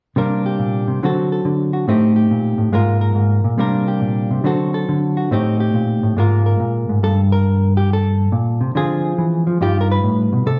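A swung 4/4 pulse at 140 BPM, with the eighth notes given a relaxed lilt, carries this short solo jazz passage in G minor, cut from a longer piece. A lone hollow-body electric guitar plays from 0.2 to 10.6 seconds, its clean, dark tone fingered and compressed and kept up front, ranging from G2 to B4. The first stretch cycles through Csus2, D7, Am7b5 and Absus2 twice, and at 7.0 seconds the harmony turns to Gmadd9, Dm7b5 and a closing G7b13. A large studio reverb with a wet tail places the guitar further back in the room, giving the sound a spacious, late-night glow. The mood is cool, suited to the small hours.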